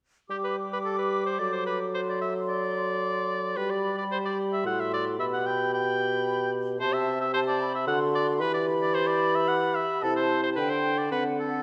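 A clear, punchy oboe with vibrato and a smooth top sits up front in this cheerful, spirited classical-period excerpt for symphony orchestra in triple time, sharing the second line with a dark clarinet set back in the background and a small flute group that sounds airy and hollow, with a crisp attack and straight tone heard close up. Beneath them a dusky, up-front bassoon carries the accompaniment, the four winds sounding together from 0.3 to 11.6 seconds as the harmony moves through G, D7 and E minor before settling on G5 over D. Moderate concert hall reverb gives the ensemble a spacious bloom.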